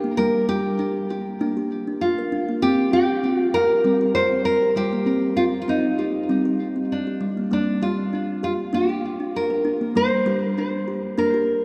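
World meditative music with a hypnotic pull, this short excerpt pairs a full-bodied, fingerpicked nylon-string guitar melody carrying a touch of delay with soft, woody kalimba arpeggios of hollow-box character, both up front and bathed in a vast cathedral reverb as the harmony moves from G minor to C minor and back.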